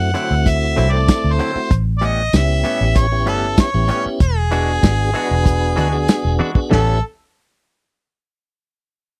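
An up-front harmonica with overdrive, slapback echo, scooped notes and light vibrato leads this swaggering, soulful straight-eighth soul blues over a piping tonewheel organ on slow rotary speaker and a round, foam-muted fingered bass, joined by twangy, compressed clean guitar stabs with subtle chorus and a muffled, lo-fi drum kit with tambourine whose fill at 6.4 seconds leads into a dark lap steel slide entering at 6.7 seconds, all captured in a dry, close 1970s-style studio sound.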